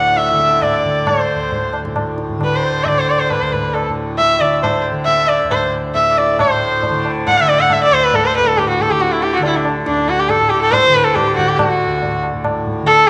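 A rich, nasal sarangi leads this devotional, serene Hindustani piece in raga khamaj, its single bowed voice up front with light vibrato, gliding portamento and the earthy ring of sympathetic strings. Beneath it a very quiet hand-pumped harmonium plays a second line, reedy, dark and breathing. A softly plucked tanpura holds a buzzing, shimmering drone throughout, while a low-tuned tabla with a short ring enters at 0.2 seconds and keeps time in 3/4. The music moves from an opening section into a second one at 6.4 seconds, speeding up across the whole passage. A moderate plate reverb gives the sound a spacious, devotional glow, and the music is cut from a longer piece.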